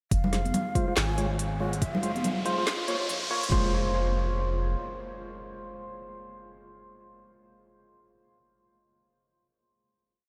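Soaked in cavernous cathedral reverb and high-pass filtered, this heavy deep dubstep piece in F minor at 141 BPM rides a swung half-time feel, building for 3.5 seconds under a filter sweep as a breathy bamboo shakuhachi with dub echo plays call phrases over a round, soft sub bass, a layered electronic kick, a drum kit with woody snare, smooth hats and claps, and distant, echoing congas, while hollow, nasal organ stabs with chorus and dub echo play off-beat chords and a riser entering at 1.4 seconds carries into an impact and a final F minor chord.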